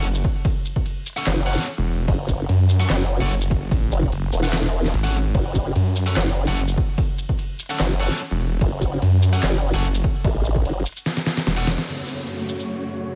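Heavy wobble dubstep in F# minor at 147 BPM with a swung half-time feel, this menacing, aggressive excerpt opens on a drop where a growling, detuned saw bass and a formant-filtered wobble bass, entering at 1.3 seconds, sit up front beside a punchy, overdriven electronic kick and a layered kit of deep snare, crisp hats, claps, shaker, ride and crash. Bright, double-tracked stabs of sludgy overdriven guitar with delay sit quietly in the mix, and a drum fill drives into a band accent at 11.8 seconds. At 11.9 seconds huge, lush supersaw chords with phaser, sidechain pumping and a low-pass filter sweep arrive alongside a downlifter, all in a dry, close sound.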